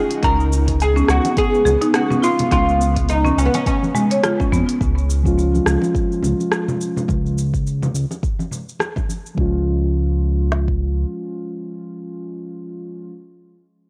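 A bright, fretless oud carries the tape-echoed melody over a blurred granular cloud pad and a dry, buzzing marimba's arpeggios in this earthy organic downtempo piece at 105 BPM in Db mixolydian, with a swung electronic drum kit of deep kick, woody snare, smooth hats, rim click and shaker, soft-handed vintage congas, and a dark, up-front sawtooth synth bass pumping underneath, before muted felt-like synth keys take over the accompaniment at 5.2 seconds through a haze of chorus and worn, warbling cassette tape.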